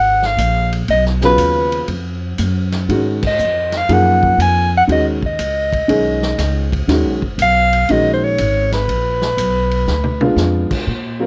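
Modal jazz with a cool, searching mood and a swinging feel, cut from a longer piece, where a breathy soprano saxophone carries the melody up front with light vibrato and a soft subtone, over a woody, growly pizzicato upright bass. A boxy upright piano with short sustain joins at 1.2 seconds, while a vintage drum kit with dark cymbals and a punchy kick sits mid-forward in the mix, marking a band accent at 3.1 seconds and a fill at 9.9 seconds. Light reverb and a worn, warbling cassette tape sound with pitch drift give the whole recording an aged, hazy character.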